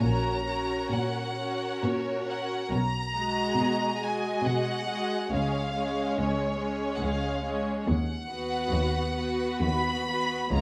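Close, detailed microphones in a moderate recital hall reverb frame this tender, lyrical excerpt from a slow romantic movement for string orchestra in 3/4 at 68 BPM, its uneven, rubato beats carrying a focused, up-front violin section melody over a lush, soft-attack second violin line, a distant viola accompaniment, and bowed cellos and double basses with vibrato, moving through F#/A#, G#m7/B, C# and B/D# across 10.6 seconds.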